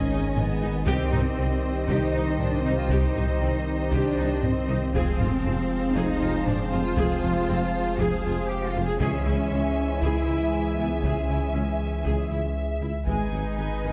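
Set in a moderate scoring-stage reverb, this tense, relentless hybrid orchestral and electronic film-score cue at 118 BPM carries a smooth, vibrato-rich violin melody over a lush second violin line, bright distant violas and even bowed cellos, while very quiet mellow French horns and clear trombones hold sustained chords beside a hollow, chorused pad, and a saturated sub bass, dark tuba and faint double basses anchor the low end beneath background taiko drums that enter at 0.4 s.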